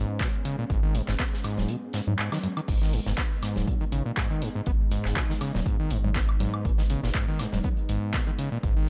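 A swung 4/4 groove drives this short, trippy acid house excerpt in a minor key, anchored by a dry, punchy, overdriven electronic kick that drops out between 1.7 and 2.7 seconds. A tape-toned analog drum machine adds congas, crash cymbal, handclaps, hi-hat and woodblock, while a tight acoustic kit sits low in the mix with its high-tuned snare and hi-hats filtered and their top rolled off. Up front, a squelchy, resonant sawtooth acid bass plays a distorted riff with a filter sweep and a fast, decaying attack. Beneath it, a deep, round sine sub bass holds the low end, and a smooth, detuned sawtooth pad with chorus sustains chords in the background. The bass parts and pad pump against the kick, and the whole recording has a gritty hardware character with transformer saturation.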